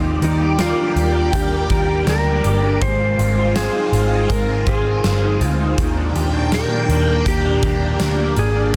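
A phased string machine and an electric guitar through a small old amp open together, the strings holding swirling, sawtooth chords under ensemble chorus and phaser while the guitar plays fingered, slightly broken-up arpeggios colored by analog chorus and digital delay. A vintage muted picked bass sits up front beneath them, its tone dark and round from the foam mute. At 0.2 seconds a clean lap steel guitar enters with a slide melody shaped by volume swells and trailed by digital delay, alongside a huge arena drum kit with a fat snare, punchy kick and hi-hat ringing in a hall. This short dream pop cut from a longer piece moves in a straight 4/4 at an unhurried pace, drifting between Ebmaj7 and Ab6 chords for a dreamy, floating mood. Light reverb softens the parts, yet the master stays dense and heavily limited.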